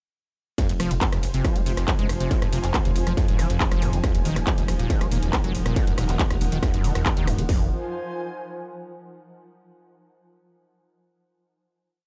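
Dark, driving peak-time techno at 139 BPM in F phrygian, where a distorted four-on-the-floor kick with metallic open hats sits up front, joined by a second kit of claps, closed and half-open hats, ride and rim clicks, while a squelchy, gritty acid bass line with accents and slides and a thick, beating detuned saw bass rolling in sixteenth notes pump under sidechain, a very quiet swarming drone on F3 enters at 1.7 seconds, and an airy, breathy chorused pad shifts from Fm to Ebm before holding a final Fm chord from 7.5 seconds as the other parts drop away in a dry, dark mix.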